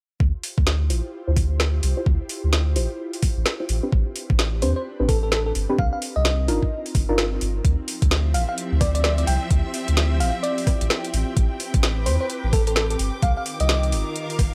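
Soulful and late-night, this two-step UK garage cut moves at 129 BPM in 4/4 with a swung 16th-note feel in D dorian, circling through minor eleventh chords. An overdriven, knocking electronic kick and a garage kit of woody snare, rim click and metallic hats sit up front, joined by a round, soft dub sub bass whose filter sweeps through the first half. A deep, mellow chord stab, colored by chorus, cassette tape and analog delay, also sweeps its filter from the start until it drops out at 7.2 seconds. An ethereal, airy pad holds sustained chords beneath, breathing with sidechain pumping and its own reverb, while a sparkling, warbling FM electric piano carries the melody from 4.6 seconds. At 7.6 seconds the second section brings in a clear, focused string section with vibrato, also pumping, and the whole mix stays dry and gritty, like a hardware recording.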